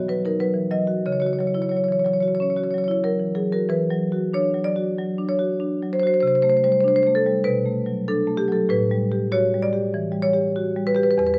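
A solo marimba played with medium hard mallets sits up front with a vintage, band-limited tone in this hypnotic, reflective excerpt of a contemporary classical piece, moving in a rubato 4/4 at roughly 89-98 BPM from C# dorian into E minor at 3.7 s, where Esus2, Csus2, Bm7 and A13 chords unfold across a range from E2 to D#5, captured by close, detailed microphones in a moderate recital hall reverb before it cuts off at 11.4 s.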